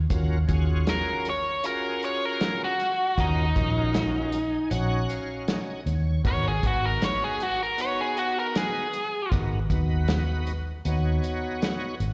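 Soulful and smoky, this short excerpt of straight-eighth soul blues in Eb minor moves at 78 BPM in 4/4, with a round, foam-muted fingered electric bass up front and a dark soul drum kit with a tight kick and rolled-off top alongside a shouting tonewheel organ that carries slow rotary speaker, overdrive, chorus vibrato, key click and slapback echo. A biting, overdriven lead guitar, picked and also treated with slapback echo, carries the melody from 0.9 to 9.3 seconds, while the organ adds a fill from 3.9 to 6.2 seconds before the harmony moves from Ebm9 to Abm9 at 6.2 seconds. The sound is that of a live gig heard through the venue's PA, with light recital-hall reverb.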